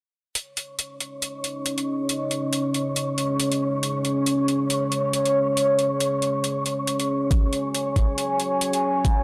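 A swung, half-time 138 BPM groove opens this brooding, meditative deep dubstep excerpt, with overdriven metallic hi-hats from 0.4 seconds and a knocking, overdriven kick only arriving up front at 7.3 seconds. From 1.6 seconds a deep, dark pad holds sustained chords built from sawtooth, sine and triangle waves with wave-folding and ring modulation, thickened by chorus and reverb and shaped by a filter sweep, while a breathy, wind-like tuned noise layer hangs on C#5. The chords move from C#5 to F#5, and the gritty hardware sound sits in a light digital ambience.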